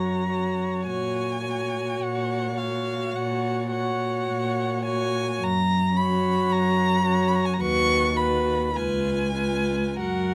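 Up front, a single violin carries the melody above the ensemble with a warm, expressive tone, soft attacks, vibrato and gliding portamento. A second violin adds a rich, even inner line, while a distant viola gives smooth accompaniment and a dark, woody cello anchors the bass, each bowed with vibrato. This serene, slow romantic string quartet movement in F# major drifts with rubato around 46-55 BPM in 4/4, captured close, dry and detailed in a brief passage cut from a longer piece.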